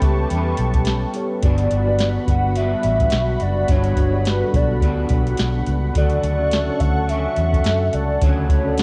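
A soft vintage rhythm box with a deep kick, crisp snare and metallic hats opens this nostalgic, dreamy bedroom-pop excerpt alongside a dark, round, foam-muted electric bass, both up front, while a slightly broken-up electric guitar with chorus and warbly pitch drift and a mellow tine electric piano sit in the background beneath a thick, detuned unison pad. At 1.4 seconds a hollow, woody clarinet-like synth lead enters with vibrato, chorus and tape echo, carrying the melody over chords that move from A9 to Gmaj7 and then Dmaj7 at 6.0 seconds. The lightly swung indie-pop groove has the hazy feel of a home cassette recording, with cassette tape coloring the piano, drums and lead.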